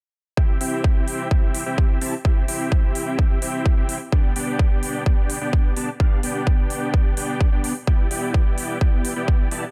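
A huge, thick supersaw riff arrives at 0.4 s alongside a punchy, up-front electronic kick, setting an anthemic, triumphant festival progressive house mood in this short cut from a longer piece, with the detuned saw layers carrying a sub octave, vibrato, sidechain pumping, a low-pass filter and dub echo. Crisp, overdriven hi-hats, re-recorded in a large room, join at 0.6 s, while the harmony moves from C to G and then to Em7 at 7.9 s. The overall sound is dry, with little reverb.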